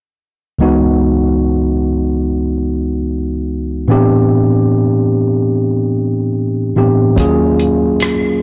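A worn, slightly out-of-tune tine electric piano provides the accompaniment in this late-night, sultry slice of R&B and neo-soul. It plays lightly overdriven through a combo amp and sits up front from 0.6 seconds, spanning C#2 to G#4. At a relaxed 73 BPM in 4/4 with a 16th-note swing, it moves from C#m11 to Am11 and then to D#m11 at 7.2 seconds. At that moment a dark, round, foam-muted electric bass arrives, amped and punchy but set low on a single D#2. A dry, damped 70s drum kit enters with it, carrying hi-hat, tight kick and rim click up front, with soft clipping on the snare. Light reverb and small-room ambience frame a blown-out, overdriven recording, cut from a longer piece.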